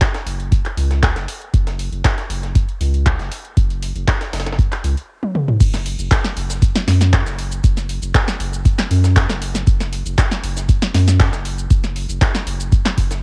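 A deep, up-front analog kick, a punchy drum machine with shaker, toms and crash, its snare, handclaps and metallic hats set in a short room, and a gritty, pitched-up breakbeat kit with a filtered high-tuned snare sitting in the background open this raw, trippy acid house excerpt at 118 BPM, joined at 0.3 seconds by a round, dark, sustained analog bass that pumps against the kick, with everything dry and tape-colored from a cassette home recording, and a drum fill at 5.2 seconds tips it into the drop at 5.6 seconds.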